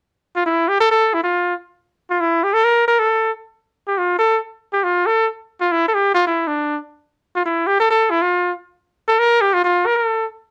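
Set in a straight 2/4 at 138 BPM, this short klezmer passage is cut from a longer piece and carries a bittersweet yet festive mood, tuned to A4 = 444 Hz. A lone cornet carries the whole fragment as a solo, entering at 0.4 seconds and stopping at 10.3 seconds, moving between D4 and Bb4. Its tone is clear and punchy, pushed forcefully to the front with light vibrato and scooped notes that lend a jazz-style flavour to the traditional idiom. The melodic phrase is stated and then begun again at 6.9 seconds, giving the brief passage a sense of repetition. The cornet carries a cassette tape colouring, and the home recording on cassette sits in light reverb, giving the sound an intimate, homespun character.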